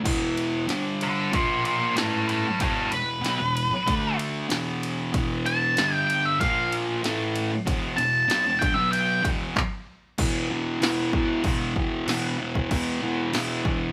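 Garage rock in E minor at 95 BPM with a swaggering, menacing mood, built on a thick, double-tracked fuzz guitar riff over a punchy analog drum machine with crash, ride, handclaps and tape-toned kick and snare, while a dark octave-fuzz lead guitar carries the melody from 1.0 to 9.2 seconds before a stop at 9.6 seconds gives way to a new section at 10.2 seconds, all captured live in one room with light reverb.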